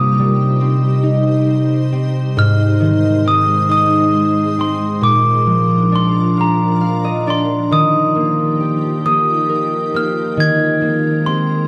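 A tender, gentle children's lullaby in 6/8 opens with a glockenspiel played with soft plastic mallets, its airy, bell-like melody sitting high and up front, while a concert harp and a shimmering ambient pad sound together from the first moment. The harp, acoustic and fingerpicked, carries the accompaniment with a warm, ringing tone, also placed close to the listener. Beneath them, the pad holds sustained chords with an ethereal, detuned, octave-up glow, its slow attack, long release and granular, evolving texture softened further by chorus and its own reverb. The chords move from C minor through A-flat and B-flat until a harp fill at 6.4 s leads into a second section at 7.7 s, where the harmony settles onto added-ninth colours on E-flat and A-flat. The sound is that of a dry, close 1970s-style studio recording with a touch of light reverb, and this excerpt of a longer piece ends with the glockenspiel falling silent at 11.5 s, just before the harp and pad finish.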